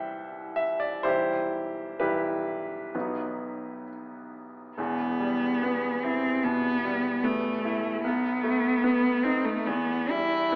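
Heard through an AM-radio sound and a wet recital-hall reverb, this elegiac, solemn excerpt from a longer romantic piece for cello and baby grand piano moves with a free, rubato pulse. The bright, polished piano opens alone, its action noise audible, moving from C through Em/B to B. At 4.8 seconds the cello enters up front with a rich, focused bowed melody, its vibrato singing over the piano's accompaniment as the harmony turns through B7 and settles on Em.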